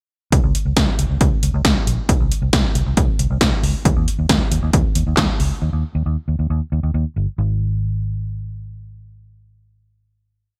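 Punchy 1980s-style electronic drums, with a gated snare, metallic hi-hats, handclaps and a kick sitting up front, drive this brief, bright and wistful synth-pop piece through a pre-chorus until they stop at 5.5 seconds, leaving the dark, round, foam-muted electric bass to carry on alone to its final note ending at 10.6 seconds in a dry, crisp digital mix.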